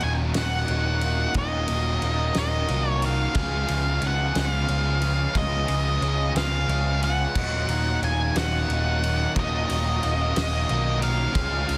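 Swaying in a slow 6/8 with a straight feel, this moody, bittersweet indie rock fragment, cut from a longer piece, moves from Ebm7 to Db7 at 3.4 seconds and back to Ebm7 at 7.4 seconds. An up-front octave-fuzz lead guitar with a dark, distorted tone and slapback echo carries the melody over a double-tracked overdriven guitar riff and a picked, amped electric bass. A loose, roomy acoustic drum kit with a fat snare, punchy kick, dark cymbals and a rolled-off top sits behind them, while a very quiet, warbling, detuned sawtooth pad with chorus holds lush sustained chords, all in a dry, dense, heavily limited mix.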